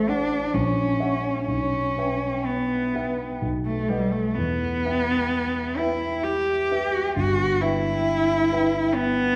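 Romantic classical duo in E minor, melancholic and elegiac, moving in a rubato 3/4 at around 61-70 BPM: a single bowed cello sings the melody with rich, expressive vibrato and portamento over a dark, mellow concert grand piano whose deep bass, smooth tone and short sustain lend the accompaniment a vintage character, both parts placed up front yet heard from further back in a wet recital hall with a 1.4 s reverb, through this 9.4-second passage cut from a longer piece.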